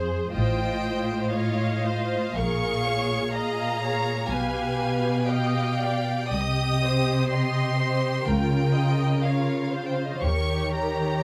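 Close, detailed microphones and a light reverb give this short cut from a longer classical piece an intimate studio sound. It is a slow, romantic movement for string orchestra in 4/4, moving at 53-65 BPM with a rubato feel and a serene, lyrical mood. A lush violin section carries the melody from 0.3 s, smooth and even with vibrato, while a second violin section plays an even, bowed second line beneath it. The viola section fills the middle with a rich, smooth accompaniment, and the cello section sits up front on the bass line, expressive with vibrato and portamento. The double bass section joins at 0.4 s with a soft attack, rounding out the low end as the harmony drifts from F7/A through Bbm7, G7/B and Cm toward Eb7.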